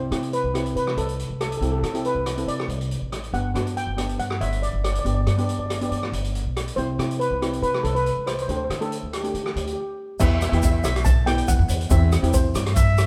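A sunny, carefree calypso at 140 BPM opens with two shimmering steel pans: a dark, smooth lead melody played with medium rubber sticks over a bright, close-miked accompaniment struck with hard rubber sticks. Beneath them sit a woody, thumpy pizzicato upright bass and a vintage drum kit with a punchy kick and a rolled-off top, the band playing live together in a stone room with moderate reverb. After a brief break at 9.8 seconds, a grainy egg shaker joins at 10.2 seconds for the second section, and a breathy, intimate trumpet slips in at 12.7 seconds just as the excerpt cuts off.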